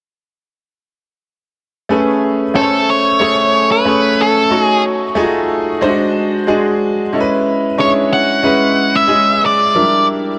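Upbeat and urban, this pop excerpt moves at 92 BPM in a straight 4/4 in A major, with a clear, intimate baby grand piano entering at 1.9 seconds to lay down lush, chorus-tinged chords, its audible action noise and long sustain kept up front. At 2.6 seconds a dark, picked octave-fuzz lead guitar takes the melody with distortion, sitting just as close. A moderate, lush hall reverb surrounds the pair as the harmony drifts from Amaj9 through D#m7b5, D7#11 and C#m7 to Em7b5.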